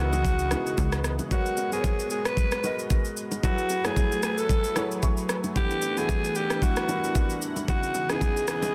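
Amapiano with a deep, soulful mood, cut from a longer piece: a breathy, raspy alto saxophone with vibrato carries the melody up front through tape echo, over an intimate concert grand piano whose action noise is audible and a lush, detuned unison pad that sits in the background with chorus, phaser and sidechain pumping. A punchy, funky analog bass pluck sounds only until 1.2 s. From 0.1 s a smooth R&B drum kit with a knocking kick, rim click and shaker drives the groove alongside dry, bright bongos and congas, while the piano adds a fill from 4.8 to 5.6 s as the minor eleventh chords move from C#m11 through G#m11, F#m11 and Em11.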